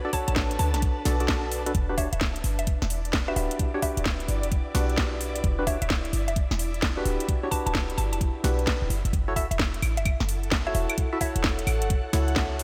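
A swung two-step garage groove at 130 BPM in E dorian bounces with soulful feel, as a knocking electronic kick and an up-front garage kit of cracking snare, metallic hi-hats and claves drive punchy, tight 808-style bass that pumps to the sidechain, while hollow, dark organ stabs with chorus and analog delay, a woody, round mallet-like pluck melody tucked in the background with phaser, and an ethereal, warbling pad that pumps beneath its reverb move from Bm7 to Em7 at 1.7 s and F#m7 at 8.9 s in this short cut from a longer piece.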